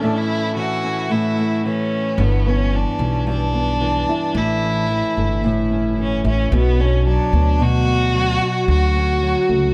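Sunny and heartfelt, this acoustic pop piece moves at 111 BPM with a gentle 16th-note swing. A smooth, bowed violin with vibrato carries the melody through tape echo, alongside an up-front, thumb-plucked nylon-string guitar with audible finger squeak, while a clear, intimate upright piano, also echoed, sits in the background for only the opening break before stopping at 2.2 s. At that point a growly, woody pizzicato upright bass enters as the chords move through A, G6, Bm and Dmaj7, all within a lightly reverberant, echo-heavy mix.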